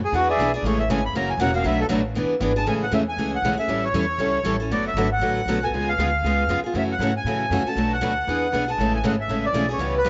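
A reedy, close-miked accordion with a slow beating shimmer takes the lead and opens with a solo through 2.7 seconds in this charming, playful jazz manouche fragment at 236 BPM in A major, swinging over a woody, thumpy pizzicato upright bass on gut strings and two bright, fresh-strung picked steel-string acoustic guitars (one up front, the other in the background with a hint of finger squeak) that comp through changes from E7 and Amaj7 to D6, C#7 and F#m9, with the accordion and guitars carrying a cassette-tape tint under a moderate spring reverb in a lo-fi home recording.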